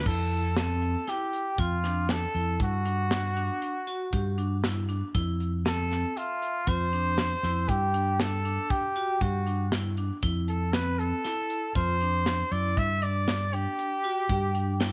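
A small room ambience and light reverb frame this 14.9-second excerpt of progressive instrumental band music, an intricate, driving piece in 5/4 at 118 BPM with a straight feel. A warm, jazz-style trumpet carries the solo melody from F4 to E5 with light vibrato, its tone distant and roomy yet placed up front. Beneath it, a dark, round fingered electric bass holds between F2 and G2, while a vibraphone struck with hard mallets rings out metallic arpeggios with a slow motor vibrato. A polished modern studio drum kit drives the groove with bright cymbals, a medium-tuned snare, a tight kick and hi-hat, and a very quiet, grainy egg shaker sits close in the background. The harmony alternates between Fmaj7 and G5 throughout, changing roughly every two and a half seconds.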